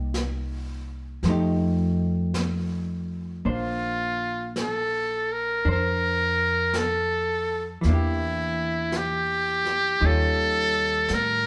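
A trumpet with a metal mute carries the melody from 3.5 seconds, sitting up front with a brilliant, buzzy, thin tone, light vibrato, breathy edges and scooped notes in a solo jazz style. This short cut from a longer jazz ballad moves at a slow 55 BPM in 4/4 with a swung eighth-note feel in Bb major, and it has an intimate, late-night mood. From the opening, a vintage hollow-body electric guitar plays clean, picked, compressed accompaniment with a dark colour, while an upright bass plays pizzicato on gut strings with a woody, thumpy sound. A brush drum kit sits further back, with brushed snare and hi-hat giving a smooth, rolled-off top. The harmony moves from Cm7 and F9 into Bbadd9 when the trumpet arrives, then through Em7b5 to Eb9, ending at 11.5 seconds. The band plays live together in one room, wrapped in a wet stone-room reverb.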